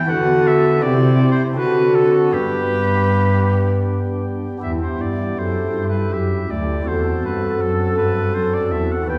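Solemn and flowing, this baroque-style sonata movement with continuo moves at 81 BPM in 3/4 with a rubato feel, starting in G major before turning to E minor at 4.6 s. A clear oboe carries the melody between G4 and G5 with vibrato, a soft attack and a present, classical-style solo voice, though it sits lower in the balance than the other parts. A brilliant baroque flute enters at 0.1 s with a close-miked second line of airy, woody straight tone and tongued notes, the most prominent part of the group. Beneath them, a pipe organ on soft flute stops gives baroque voicing with chiff and tremulant, set up front, while a single bowed cello plays the bass line with a nasal, reedy gut-string tone in period style, heard at a distance. The wet recital hall reverb, with a 1.8-second decay, places the ensemble further back in the room, and the excerpt is cut from a longer piece.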